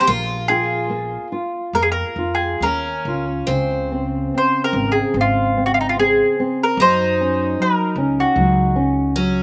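A rubato 4/4 pulse drifting between 66-77 BPM carries this tender, nostalgic fado-style ballad fragment in Bb minor, where a round, up-front mandolin with slapback echo sings the melody over a shimmering, octave-doubled twelve-string second line, a thumb-plucked classical nylon-string guitar accompaniment also touched by slapback echo, and a woody, growly pizzicato upright bass entering at 0.1 s, all heard dry and open-air before the harmony turns to Db major at 3.5 s and moves to Gb at 6.8 s.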